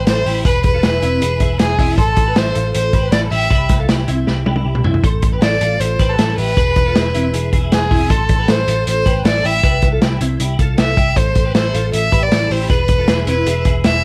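A smooth bowed violin with vibrato carries the melody in A minor over a bright, twangy twelve-string electric guitar playing clean, chorused arpeggios and a dark, round, foam-muted picked bass, while a muffled, lo-fi vintage drum kit with a punchy kick enters at 0.1 s and plays a fill from 4.3 to 5.0 s, giving this restless, bittersweet jangly indie pop passage at 157 BPM a dry, up-front sound as it cycles through E, Am and C chords.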